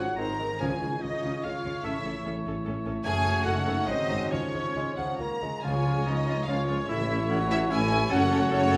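Heard in a reverberant recital hall, this cheerful, spirited classical excerpt for symphony orchestra moves fast in 3/4 at 134-150 BPM with rubato in Db major: a lush, focused violin section carries the melody over a softer, portamento-tinged second violin line, joined by airy flute, clear oboe and smooth-topped clarinet second lines, bassoon and even viola accompaniment, mellow French horn chords, bright, ringing harp arpeggios and distant trumpet stabs, all above a woody cello and rich double bass foundation, with timpani sounding from 0.6 to 1.2 s and a tuba adding to the bass from 5.6 s.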